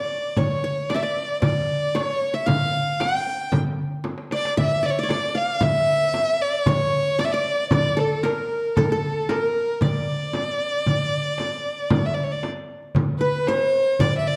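Bathed in lush recital-hall reverb with a dusky, mellow production, this passionate, stately excerpt of an Arabic maqam ensemble in straight 4/4 puts a dark, close bowed violin up front, singing expressively with vibrato, portamento and soft attacks. Beneath it a fingerpicked qanun with triple strings adds a bright-edged second line. A crisp metal-shell darbuka and a warm frame drum supply the percussion, with a drum fill at 4.1 seconds and a new section arriving at 13.0 seconds.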